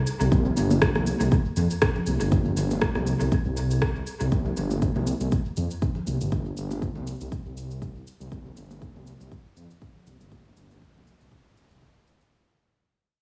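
Spiritual and warm, this afro house excerpt moves at 120 BPM with a swung sixteenth feel, built on a punchy, up-front electronic kick, a dark, rumbling detuned saw bass with sidechain pumping, layered electronic shaker and rim click trailing dub echo, and bright, high-tuned congas set back in a large room, all within an echo-heavy mix that fades out across its 12.3 seconds.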